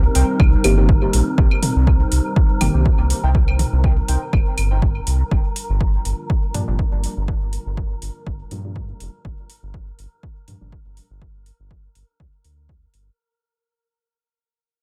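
Meditative and nocturnal, this dub techno fragment moves with a slight swing in 4/4, cut from a longer piece and fading out across its full length. An overdriven, punchy kick sits up front from 0.4 seconds alongside metallic, overdriven hi-hats that carry the sound of a large room, while electronic claves and toms, recorded in a small room and thrown into dub echo, add percussion until 4.7 seconds. Underneath, a round, deep analog bass anchors the low end and a dark, detuned pad with chorus holds sustained chords, both pumping with sidechain, as a breathy, wind-like tuned noise texture hangs in its own reverb. A soft, evolving chord stab with chorus, phaser and dub echo appears in two passages, its filter sweeping throughout, and the harmony shifts from Cm7 to Gm7 at 5.3 seconds. Warbling, lo-fi synth keys with a nostalgic tint flicker briefly in the background through phaser and echo, all set in a digital ambience.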